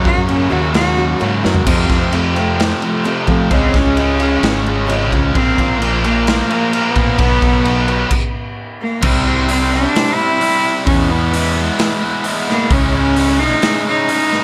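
Quiet-loud alternative rock at 130 BPM with a bittersweet, restless mood: a biting, nasal cello with light vibrato carries the melody over a boxy picked archtop acoustic guitar in the background that drops out at 5.3 seconds, a bright, double-tracked fuzz guitar riff up front, a warm overdriven fingered electric bass, and a saturated, up-front garage drum kit with a boomy kick in a small pumping room, marked by a drum fill at 1.4 seconds and a full stop at 8.1 seconds before the closing section at 9.0 seconds.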